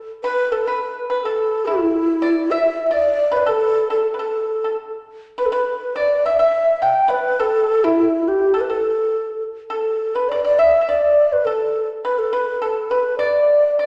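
Pastoral and festive, this short passage of Chinese traditional chamber music moves in a loose, rubato 2/4 and is cut from a longer piece. A low bamboo xiao carries the melody from 0.2 seconds, its end-blown tone breathy and bright, with vibrato and crisp attacks. Alongside it, the pipa plays a second line over the same span, its acoustic tone warm, dry and percussive under the fingerpicks. Both instruments sit up front, with the xiao slightly stronger in the blend. The music shifts into a new section at 9.7 seconds and runs to 13.9 seconds, heard in the generous reverberation of a recital hall.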